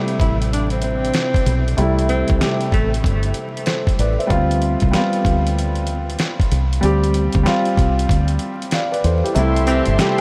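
A swung 95 BPM boom-bap groove in 4/4 sets a nostalgic, dreamy mood, with a gritty, compressed sampler-style drum kit of thumpy kick, fat snare and hi-hat sitting up front beside a round, punchy dub bass and a dark concert grand piano filtered through cassette-tape colour over C major chords. A subtone tenor saxophone with vibrato and scooped notes sings a short jazz line at the start, then returns near the end alongside a brief, tight horn-section stab, both trailed by a diffuse ambient delay. At 9.4 s the kick drops away as lush, distant bowed strings, a tube shaker and a woodblock enter in the background, all bathed in huge reverb and vinyl crackle in this cut from a longer piece.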